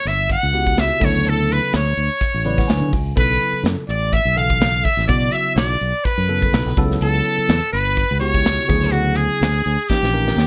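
A buzzy, metal-muted trumpet soloing with vibrato, scooped notes and a slapback echo and a biting, double-tracked overdriven guitar on a second line open this driving, slick electric jazz fusion piece at 125 BPM with a light 16th-note swing, joined by a fingered electric bass and a polished studio drum kit with a punchy kick, while a clean tine electric piano drenched in lush chorus enters at 0.5 seconds and plays a fill at 2.2 seconds, and a drum fill at 9.9 seconds arrives on a D#7b9 chord after the harmony moves through Dmaj7 and Bm7, all set in a light reverb.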